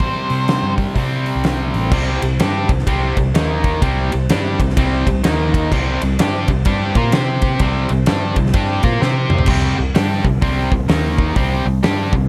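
A bright, double-tracked cranked stack guitar drives the overdriven riff up front in this gritty, swaggering blues rock and southern rock excerpt, swinging at 127 BPM in C mixolydian over a big acoustic kit with a fat snare and punchy kick, and a round, foam-muted vintage fingered bass. A dark, fuzzy octave-fuzz lead guitar with plate reverb sounds a brief melody note in the first 0.7 seconds, and a soft, flute-like tonewheel organ on slow rotary speaker sustains chords in the background from 1.6 seconds. A drum fill at 9.0 seconds carries the band into the repeat of the section, with the kit in a big room and light reverb over the whole mix.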